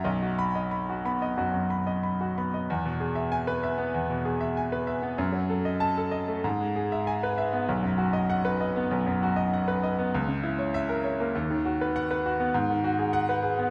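A clear baby grand piano, intimate and up front with audible action noise, plays alone from 0.0 s in this brilliant, heroic excerpt of a virtuoso classical piano study in E major, moving with rubato at 89-101 BPM in 4/4, spanning B1 to B5 and tuned to A4 = 441 Hz, its natural tone set in a wet recital hall reverb with a 1.5 s decay as the brief opening passage gives way to a new section at 2.7 s that passes through diminished chords before reaching G#m7 at 12.5 s.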